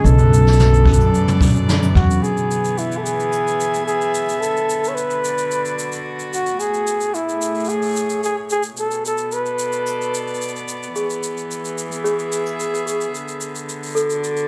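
A dark, warm production with a modest room sound frames this pastoral, delicate folktronica excerpt in a straight 4/4. A soft-attacked, up-front flugelhorn carries a jazz-style melody with light vibrato, tape echo and plate reverb until 10.7 s, over a close, reedy string quartet holding bowed chords with a gut-string tone, while a distant brush kit of shaker, snare and toms plays throughout. Ringing fingerpicked harp arpeggios, a woody pizzicato upright bass with tube saturation and a boomy kick drum appear only in the opening seconds, and a bell-like celesta takes up a sweet second line from 11.0 s to the end.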